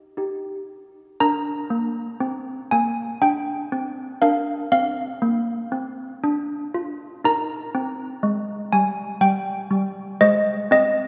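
A serene, festive classical tune rings out on solo malleted handbells, their airy, bell-like tones sounding damped and short yet up front, spanning G3 to Bb5 in an unhurried 3/4 at 60 BPM, tuned slightly low to A4 = 437 Hz, and wrapped in a wet church reverb as the harmony moves from Eb to Bb at 1.2 seconds, back to Eb at 7.2 seconds and on to Ab at 10.2 seconds in this brief cut from a longer piece.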